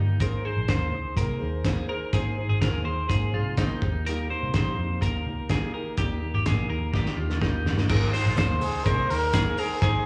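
A breathy, whispered trumpet with scooped notes and vibrato slips in up front at 8.6 seconds over a nostalgic, youthful jangly indie pop groove at 125 BPM in Ab major, where a bright, twangy twelve-string electric guitar plays arpeggios with spring reverb and slapback echo, a full-bodied fingerpicked acoustic guitar picks out accompaniment, a round foam-muted vintage bass holds the low end, and a cloth-damped, thuddy drum kit with a fat snare and dark cymbals rolls through a fill before a very quiet jingly tambourine joins at 7.9 seconds, all heard as a live gig through the venue's PA with club reverb.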